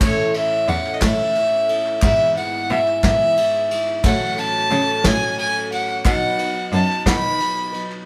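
In 6/8 at 60 BPM, this uplifting, warm indie folk excerpt sets a clear, up-front bowed fiddle melody over a smooth bowed cello bass line, a soft felt-muted upright piano, a bright, shimmering picked twelve-string acoustic guitar, a vintage brush kit with dark cymbals and a tight kick, and very quiet, crisp group handclaps, played live in one room with light reverb as the chords move through A, E/G#, F#m/A and B.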